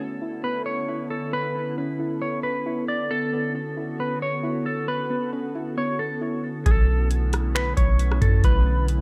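Atmospheric cloud-rap hip hop at 135 BPM in a melancholic, spacious half-time feel in B minor opens on a glassy, chorused FM pad holding a Bm11 chord with sidechain pumping, while a soft, dark pluck arpeggiates in the background through a filter sweep and digital delay; a clean, fingered electric guitar melody enters up front at 0.4 seconds with its own delay, and at 6.7 seconds the pluck stops as a round, sine-like 808-style bass and a booming, tape-tinged analog drum machine arrive with deep kick, metallic hi-hats, finger snaps and rim clicks, set in a light reverb in this short cut from a longer piece.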